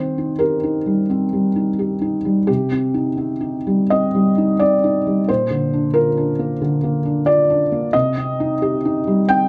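A felt-muted upright piano, soft, mellow and intimate with a thick-felt tone placed up front, plays alone across this 9.5-second excerpt of wistful, melancholic neoclassical minimalist piano in C minor at 88 BPM in a rubato 4/4, spanning Bb2 to G5 and moving through Eb6, Cm, Bb and back to Cm within a light reverb and a dark production.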